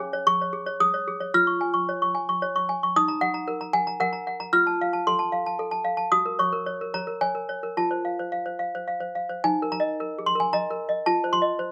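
A classical lullaby for solo toy piano, fragile and wistful, moving in a rubato 3/4 around 112 BPM with tuning set at A4 = 439 Hz. The toy piano sits up front, clanky and bell-like with the tap of plastic hammers and a slightly out-of-tune quality, ranging from Eb4 to F6 under light reverb. Cut from a longer piece, it drifts through a series of chords in its opening section before shifting to a brief new section at 9.4 seconds.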